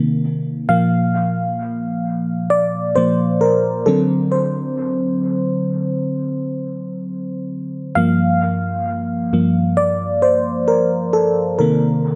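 A slow, gently swung 4/4 carries this late-night R&B excerpt, played entirely by a mellow FM electric piano heard alone and up front from 0.0 to 12.2 seconds. Its round, dark tone has a fast attack, decaying notes and a noise layer. Chorus and dub echo give it a longing glow inside a lightly reverberant, echo-heavy mix as the chords move from Cm7 through Bbadd9 and D7 to Gm7.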